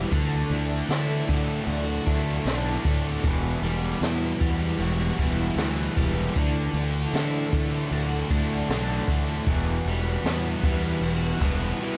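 A straight 4/4 pulse at 77 BPM comes from a jazz brush drum kit, its boomy kick, high-tuned snare and dark ride cymbal softened by brushes and a rolled-off top, with a jingly tambourine tucked in the background. This hazy, blissful excerpt from a longer shoegaze and dream pop piece sits in D major, tuned to A4 = 438 Hz, and alternates between Dadd9 and Emadd9 chords. Up front, a growly fuzz fingered electric bass with overdrive carries the low end, while three guitars play riffs behind it: a biting overdriven guitar washed in reverse reverb, a very quiet, thick fuzz guitar, and a bright, double-tracked semi-hollow guitar. A vintage string machine cello patch holds full sustained chords in the background, its sawtooth tone with sub octave, slow attack and long release shaded by phaser and ensemble chorus. Light reverb and a small room ambience give the whole mix a close, gauzy sheen.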